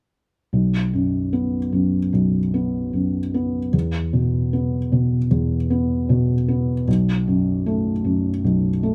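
A felt-muted upright piano begins at 0.5 seconds, playing a brief classical accompaniment at 76 BPM in 4/4 with a rubato feel. The mood is reflective and longing, and the piano stays in a low register from B1 to B3 as the harmony moves from B5 to E5 at 3.7 seconds and back to B5 at 6.9 seconds. Its tone is dark and mellow, with thick felt softening every note and an audible action noise that adds a vintage intimacy. Close, detailed microphones keep the instrument up front, while light reverb gives it a small sense of space. This short passage, cut from a longer piece, ends at 8.9 seconds.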